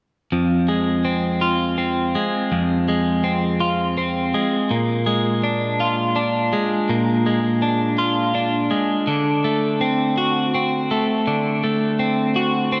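A lush, wet hall reverb gives this brooding, cathartic rock excerpt in a straight 6/8 a big arena sound, as a lone clean, compressed twelve-string electric guitar, picked and up front, rolls out arpeggios through analog delay and slapback echo over a progression from Fm to Bb7 to D7, playing from 0.3 to 12.8 seconds.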